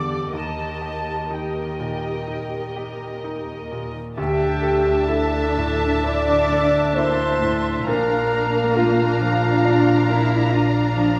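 A rubato 4/4 pulse moving at roughly 60-69 BPM gives this cinematic, sorrowful film-score excerpt in D minor room to breathe, with its harmony drifting from Eb to Dsus2 at 4.2 seconds and on to Bb at 7.9 seconds. Muted studio violins carry the melody with veiled, con sordino vibrato and a soft, distant attack, while a pure, close-miked flute section and a lush, muted symphonic violin section trace second lines around it. A bright grand piano, brilliant and intimate with audible action noise and long sustain, shares the accompaniment with a background viola section, and a dark cello section holds the bass. At 4.2 seconds the orchestra fills out: a warm French horn section sustains smooth chords, muted double basses deepen the low end, and a clear oboe and a roomy, far-off clarinet add quiet solo lines in the background. A moderate scoring-stage reverb wraps the ensemble in a moving space, and the passage ends at 11.2 seconds as a fragment of a longer piece.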